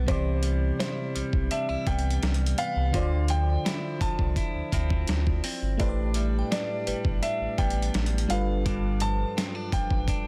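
A gritty, overdriven sampler-style drum kit with a thumpy kick sits up front beside a deep sine-like sub bass in this late-night, sensual contemporary R&B excerpt at 84 BPM in D dorian, where a dark, intimate grand piano carries the melody with tape echo over a dreamy FM electric piano pad, picked clean guitar arpeggios and a faint crystalline synth bell drifting in at 0.8 seconds, all moving through Cmaj7, Dm9, A9sus4 and G7 in a dry, dense, heavily limited mix.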